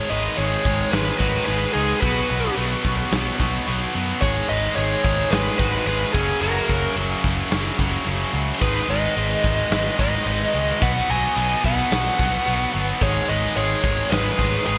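A biting, overdriven lead guitar carries the melody of this driving, menacing hard rock excerpt, its picked line spanning G#4 to G#5 with a trail of delay. Behind it a smoother overdriven lead sits in the background, adding a second line with its own delay. Three rhythm guitars stack the riff: a heavy, double-tracked high-gain part, a tight, bright distorted one, and a very quiet overdriven guitar. A growly, amped fingered bass joins at 0.1 seconds, and a big acoustic kit with a punchy kick, medium-tuned snare and crashing bright cymbals comes in at 0.4 seconds. At 109 BPM in straight 4/4, the harmony cycles through G#m, B and F#, all set in a moderate, lush hall reverb with a bright 1980s-style digital sheen.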